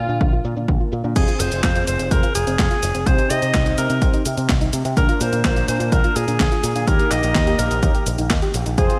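Italo disco at 126 BPM in Eb major, playful and romantic, with a bright alto saxophone carrying the melody through tape echo over mellow, brassy synth stabs treated with chorus and a diffuse ambient delay. A punchy picked electric bass with an envelope filter and tube saturation drives the low end, while a soft, round pluck plays dark arpeggios in the background with chorus and 12-bit sampler grit. A punchy analog electronic kick and a clean 12-bit drum machine with low-pass-filtered cabasa, handclaps, hi-hat, snare and crash cymbal keep the groove as the harmony moves through Bb, Fm, Cm and Eb in a dreamy mix soaked in lush hall reverb.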